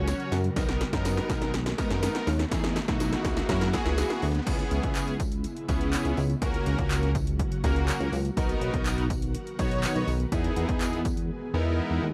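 A punchy, overdriven analog drum machine with kick, snare, handclaps, hi-hat and crash drives this euphoric, summery dance-pop excerpt in B major at 123 BPM, fills through a build-up with a background riser until the drop at 4.5 seconds, and falls silent at 11.3 seconds, while a fat, detuned sawtooth polysynth and a glossy chorused synth bass pump against the kick, an ethereal, very quiet pad with slow attack and tremolo holds sustained chords, and a jingly tambourine sits in the background of a dry, close 1970s-style studio sound.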